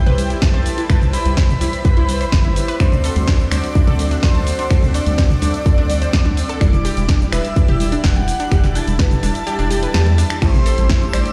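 An expansive, dreamy progressive house excerpt opens with a round, dark octave-layered synth lead carrying the melody over an airy second lead, a lush supersaw pad, glossy chorused polysynth stabs and bright detuned pluck arpeggios, all riding a deep analog bass, a punchy up-front kick, bright-hatted house drums and overdriven toms and congas, with the kick dropping out from 9.5 to 10.4 seconds and a twinkling granular shimmer appearing at 10.8 seconds, the whole mix ringing in a stone room.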